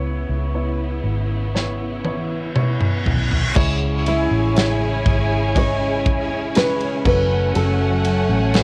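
A dark, woody nylon-string guitar carries the melody from the start of this melancholic, emotional pop ballad in C# minor at 60 BPM. Beneath it sit a baby grand piano with long sustain, a lush bowed string section in the background, and a round, foam-muted electric bass placed up front. The piano and strings carry a cassette tape colour, and the whole room has light reverb with the feel of a home recording on cassette. A modern studio drum kit enters at 1.6 seconds with a fill, punchy kick and bright cymbals, while an electronic reverse cymbal leads into the second section at 3.6 seconds. There a smooth, even violin section adds a second line and a very quiet picked steel-string acoustic guitar plays arpeggios, as the harmony moves from C#m7 to C#m and then F#madd9 in this fragment of a longer piece.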